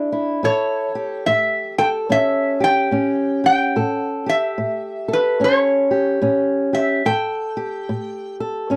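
Laid-back and rollicking, this short excerpt of acoustic country blues swings easily at 72 BPM, as a woody, boxy old ladder-braced acoustic guitar with dark, worn strings fingerpicks the accompaniment from the start while a metallic, nasal metal-body resonator slide guitar, played with fingerpicks, carries the melody up front over an A7 from 0.4 seconds, all captured in a dry, close 1970s-style studio sound with light reverb.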